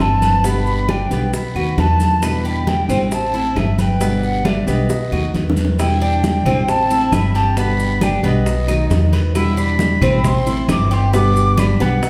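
A straight 4/4 pulse at 135 BPM drives this sultry Cuban son and guajira excerpt in E minor, cycling through G, B7, Em7 and Am, with a thumpy, gut-strung pizzicato upright bass up front and soft-handed congas, tight high-tuned bongos, woody claves, a raspy guiro and grainy maracas in the background. Over a full-bodied, fingerpicked nylon-string guitar with audible finger squeak and the metallic double strings of a picked Cuban tres playing arpeggios, an airy silver concert flute carries the melody with vibrato from a distance. A drum fill at 4.9 seconds leads into the second section at 5.8 seconds, and a wet, large studio reverb places the band further back in the room.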